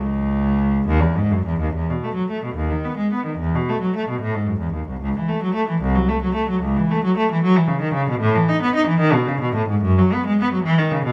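A 6/8 pulse at 68-77 BPM, counted in dotted quarters and stretched with rubato, carries this flowing, dance-like baroque-style suite movement in E major for unaccompanied cello. A single bowed cello plays alone for the full 11.1 seconds, its rich, smooth tone shaded with vibrato as it moves in an even, up-front line between C2 and D#4. Close, detailed microphones capture the instrument inside a moderate recital hall reverb, in a passage cut from a longer piece.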